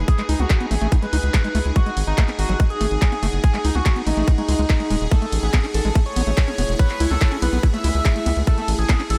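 A screaming, distorted acid line runs through this hypnotic psychedelic trance excerpt, its squelchy, resonant sawtooth riff moving through a filter sweep and swimming in chorus and diffuse ambient delay from 0.2 s. At 143 BPM in G# phrygian, a tight, up-front electronic kick drives a straight 4/4 pulse, layered with a big-room dance kit of handclaps, hi-hat and ride cymbal. Beneath it, a round analog bass of square and sine waves gives a deep, dark low end with a fast filter pluck. An overdriven, guitar-like lead with vibrato carries the melody, its wave-folded grit pushed through phaser and ambient delay. An evolving, morphing wavetable pad holds sustained chords, while an ethereal, mellow pad with detuned unison adds airy texture in the background; both sit in built-in reverb and breathe with sidechain pumping, while a very quiet metallic FM wobble bass surfaces briefly at 0.4 s and again from 5.4 s to 7.4 s.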